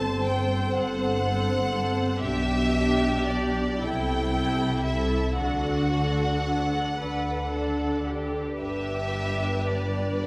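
A close, smooth first violin section sings the melody in this tender, serene passage from a slow romantic movement for string orchestra, unfolding in a rubato 6/8 at 35-42 BPM in G major. Beneath it, a focused, more distant second violin line and a lush viola accompaniment rest on rich cellos and double basses, every section bowed with vibrato, all bathed in the 1.7 s reverb of a church or concert hall. The harmony moves from F#dim/G through G/B and Am7/C to D at 5.4 s, then settles on G at 8.6 s.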